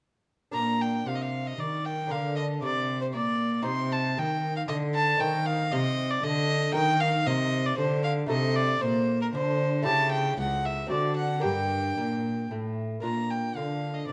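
In a straight-feeling triple metre, this flowing, radiant baroque-style sonata excerpt sets a close, nasal violin melody with an airy bow and reedy period tone over a delicate, fingerpicked lute on double gut strings and a dark, smooth-topped period cello bass, all three playing throughout as the harmony turns toward the minor at 6.8 seconds before settling back at 13.0 seconds, within the glow of a stone room.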